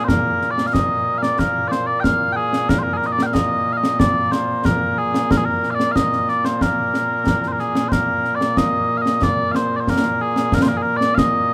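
Scottish traditional pipe music in a straight 2/4 metre, proud and ceremonial in mood, cut from a longer piece. Mellow small bagpipes carry the sweet, continuous melody up front with vibrato, a solo voice spanning a broad range, while concert snare and bass drum sit close alongside with bright cymbals and the natural sound of a live room. The tune runs through its opening strain twice, the second pass starting at 7.9 seconds, all in a dry, intimate recording.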